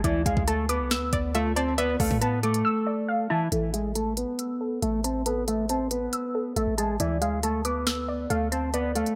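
Hip hop in a trap style, this short, melancholic and dark excerpt moves with a half-time feel. A clean, fingered electric guitar carries the melody up front through a low-pass filter, while a lo-fi, detuned pluck warbles underneath with chorus and its own low-pass filter, supplying the accompaniment. A deep, boomy 808-style bass anchors the low end, and an overdriven electronic drum kit with knocking kick, sharp snare and crisp hats sits forward in the mix. Between 1.1 and 2.2 seconds a twangy, nasal resonator pluck adds a brief second line in the background, treated with chorus and delay. The drums drop out from 2.7 to 3.5 seconds, and a filter sweep runs from 3.5 seconds as the harmony moves from Dmadd9 to A5 and back, all within a light reverb.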